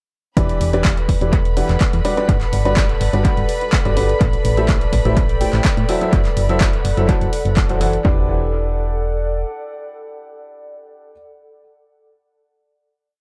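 Piano house at 125 BPM in E minor opens at 0.4 seconds straight into a drop, with an overdriven four-on-the-floor kick, programmed handclaps and closed and open hi-hats from an analog drum machine, all re-recorded in a large room. A clear, boxy grand piano plays a rhythmic chord riff in close voicing with short sustain, colored by analog delay and sidechain pumping. Underneath, a round, dark FM bass with tube saturation drives a syncopated riff, while a studio violin section holds high, biting chords with light vibrato and a smooth top. At 1.0 seconds a warbling, nostalgic tape-like pad joins with detuned sawtooth and triangle tones, chorus and its own reverb, moving through Em7, Gmaj7, Am7 and F#m7b5. The drums drop away near 8.0 seconds, and the piano and pad carry a final Em7 chord, with the bass lingering briefly beneath them, in an echo-heavy mix with light digital ambience, giving the energetic track a soulful close.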